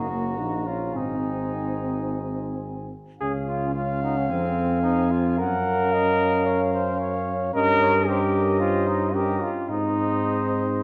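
Classical brass quintet music in Db major at 110 BPM, stately and noble with a rubato, uneven pulse, where a mellow, close-miked cornet carries the melody over a distant, lightly vibrato trumpet second line, an up-front, brilliant trombone and a soft-attack French horn with vibrato in the background as accompaniment, and a roomy tuba bass, all five playing throughout this cut from a longer piece, its harmony moving from Gb and Ab into Db, Fm, Gbmaj7 and Eb7/G before landing on Ab at 9.7 seconds, set in a dark production with a wet concert hall reverb.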